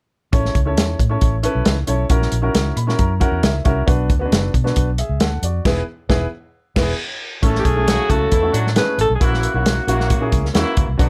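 A straight, driving 4/4 groove from a tight, roomy soul drum kit with dark cymbals sets an uplifting 1960s-style soul mood, anchored by a round, foam-muted electric bass and an intimate baby grand piano whose action noise is audible as it comps and adds fills around 2.5 and 6.8 seconds. After a band accent, a mellow, punchy horn section with octave doubling and slapback echo enters at 7.4 seconds, joined moments later by a breathy alto saxophone carrying a short, scooped jazz-style melody. Light reverb gives this fragment of a longer piece a vintage glow.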